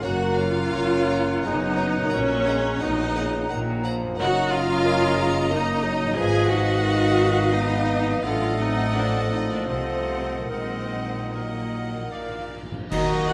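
A rich, smooth chamber violin section carries the melody with vibrato in this melancholic, elegiac slow romantic movement for symphony orchestra, a passage cut from a longer piece in 3/4 with a rubato feel around 71-93 BPM. It opens in F# major and soon turns to E-flat minor, drifting through darker chords. The focused viola section sits prominently in the accompaniment beside a soft-attack bassoon, while mellow French horns hold sustained chords and a very quiet, ringing concert harp plays arpeggios. In the background, a distant second violin section, a clear oboe, a faint vintage-toned clarinet and an airy, hollow flute section weave second lines, over cellos and an intense double bass section that anchor the bass. Bright cymbals, including a cymbal swell and clash cymbals, arrive with concert bass drum at 8.2 s, articulate hard-mallet timpani fill from 12.1 s, and roomy trumpet stabs with tight, very quiet trombone chords join at 12.9 s for a final accent. 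A wet scoring-stage reverb gives the orchestra a spacious, lingering sound.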